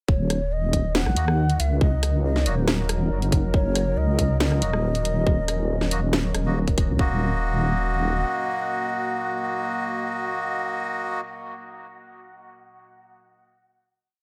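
A half-time beat of tight electronic kick and a garage kit's cracking snare, closed hi-hat and rim click drives this cavernous, heavy deep dubstep piece, where a wobbling sawtooth bass with chorus glides through long, deep notes beneath a dark, detuned ambient pad, while a reedy melodica drops sparse chord stabs into dub echo and a distant, breathy ney sings vibrato call phrases through its own echo, until the drums fall away near 7 seconds and, once the bass fades shortly after, the pad, melodica and ney hold a final chord.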